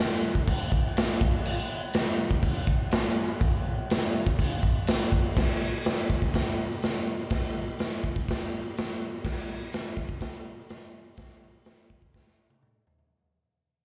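A raw garage drum kit kicks in at 0.4 seconds with a swaggering, straight rock groove, its punchy kick, medium-tuned snare, hi-hat, crash and toms sitting up front with a dark, rolled-off top, caught as a live gig through the venue's PA with light club reverb, before it fades out from 5.4 seconds and closes this cut from a longer piece with a drum fill at 12.1 seconds.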